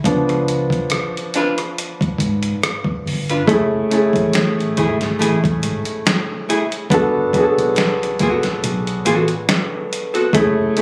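Introspective and late-night in mood, this neo-soul R&B excerpt settles into a slow 70 BPM in 4/4 with a gentle swing on the sixteenths, in F# minor and tuned slightly below standard pitch. A woody, natural upright piano sits up front and takes a solo through the opening 3.5 seconds over a C#7b9 chord, then carries rootless F#m9 and Gmaj9 voicings, the latter arriving at 6.9 seconds. The dusty sampler-style kit is gritty and compressed, with a thumpy kick, a medium-tuned snare, hi-hat, rim clicks and finger snaps, all sounding as if re-recorded in a large room. Beneath it, a vintage fingered electric bass gives a round, punchy, foam-muted low end, while a clean, picked hollow-body archtop guitar with a dark, amplified tone enters at 0.9 seconds as a second line. The whole take was recorded on a phone in the room, with a light, club-style reverb around it.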